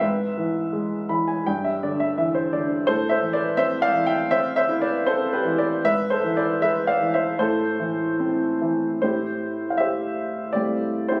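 A woody, polished upright piano plays alone and sits up front in this brief fragment cut from a longer classical piece, a lyrical solo with a wistful, dark mood. The playing moves in a loose rubato over a 4/4 pulse, ranging from G2 up to B5. A short fill runs from 0.7 to 2.9 seconds as the harmony passes from E/G# through G6 and into Am7, before returning to E/G# and settling on Am. At 9.0 seconds a new passage opens on Am7 and carries the fragment to its close. The sound has the presence of a phone recording made in the room, softened by a light studio reverb.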